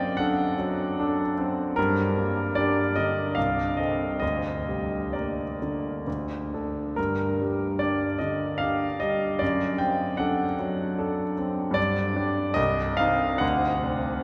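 Mournful and yearning, this romantic nocturne for solo piano unfolds in G minor at a slow, rubato pace of 64-77 BPM in 3/4 time. A concert grand carries the whole 14.2-second passage, cut from a longer piece, ranging from C2 up to G5. Its tone is clear and polished, with an intimate, up-front presence, deep bass, long sustain, and the audible noise of the instrument's action. The harmony moves from D7/F# through G minor and a diminished chord over C, returns to G minor, and passes through Cmadd11 at 12.6 seconds before ending on D7 at 13.4 seconds. A wet cathedral reverb surrounds the piano with a lingering, churchlike space.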